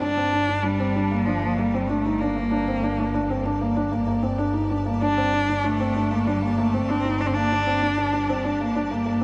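A felt-muted upright piano riff with audible action noise opens this moving, melancholic piano and strings electronica in G minor at 96 BPM, joined from the start by an expressive, nasal bowed cello melody with portamento, both up front and touched by tape echo, over a lush bowed double bass section holding G1 and a clear string quartet that fades in with sustained chords in the background, the whole set in a huge ambient reverb on a Gmadd9 chord.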